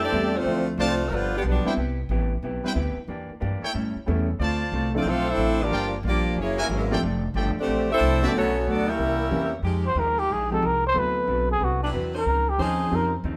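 A swinging, brassy big-band jazz passage opens with the full ensemble: a vibrato-laden saxophone section carrying the melody over a mellow trombone section's second line, bright trumpet-section stabs, a dark, clean hollow-body electric guitar, a woody pizzicato upright bass up front, and a natural-sounding grand piano with deep lows and short sustain. After a brief break the saxes and trombones return around 5.0 seconds, and the trumpet stabs fall away by 8.3 seconds. Then a breathy, whispered solo trumpet with scooped notes and soft attacks takes over at 9.9 seconds above close-miked, sustained sax chords, all set in a moderate stone-room reverb with the feel of a band playing live together.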